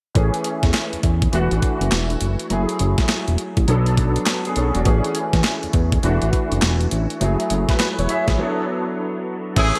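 Bright, glossy 1980s-style digital production sits in a moderate plate reverb, giving this slick, bouncy new jack swing cut a polished R&B sheen and a swung sixteenth-note feel. A crisp, sampler-style 8-bit drum machine drives it up front with a thumpy kick, a medium-tuned snare, hi-hat, handclaps and crash cymbal, its tape-warmed hits re-recorded in a small room. Underneath, a fat analog bass supplies thick, detuned sawtooth and square-wave tones with ring modulation, saturation and a quick filter pluck that settles into a mellow sustain. A concert grand piano carries the accompaniment through an ensemble chorus, intimate and present with audible action noise, deep lows and long sustain, moving through Amaj7, E9sus4, F#m9 and Bm7. After a break beginning at 8.4 seconds, a distant, roomy jazz-style horn section punches in with brief stabs at 9.6 seconds just as the fragment cuts off.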